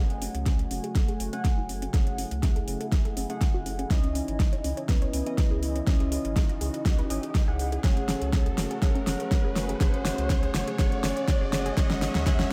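An overdriven deep house kit with a fat snare and metallic hats plays a drum fill from 0.1 seconds, and a deep, up-front electronic kick, with the ambience of a small room, enters at 0.5 seconds to drive this emotional, bittersweet progressive house build-up. A round, dark analog bass and glossy, retro chorused polysynth stabs with tremolo pump against the kick. Behind them sit a lush unison pluck arpeggio, an evolving supersaw swell of sustained chords, a soft octave-layered lead melody with vibrato, and a background riser, with filter sweeps running across the synths and dub echo trailing the lead, pluck and stabs.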